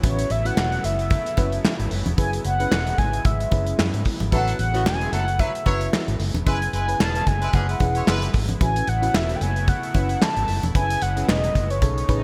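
A slick, funky early-eighties boogie funk groove moves at 112 BPM in 4/4 with a light swing on the sixteenths, driven by a tight, up-front studio drum kit with gated reverb on kick, snare, hi-hat and handclaps, a punchy, foam-muted fingered bass, and very quiet, low-tuned congas, all cycling between A69 and F#9sus4 in this excerpt cut from a longer piece. A mellow, horn-like synth lead carries the melody with a warbling vibrato, chorus and delay over a lush, dreamy FM electric piano touched with phaser and a shimmering pulse-width pad sustaining chords in the background. From 4.3 to 8.3 seconds a clear, distant horn section adds a second line, all framed in bright, 1980s-style digital production with light small-room reverb.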